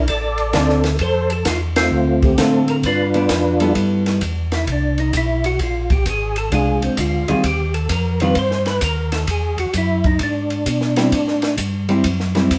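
Cut from a longer piece, this soulful, swinging soul jazz organ trio sounds like a band playing live together in one room, wrapped in moderate studio reverb. Up front, a mellow tonewheel organ carries the melody with third-harmonic percussion, chorus vibrato and a slow rotary speaker, while a second, round organ voice with key click plays the bass through the same slow rotary swirl. A compressed, picked hollow-body electric guitar accompanies in a dark, clean tone, and a compact cocktail kit adds dry drums with a punchy kick, a high-tuned snare and shadowy cymbals; after a band accent at 1.7 seconds, the organ solos from 3.8 seconds over changes that move from F6 and Dm7 through G69, Eb69 and E7 to Am7.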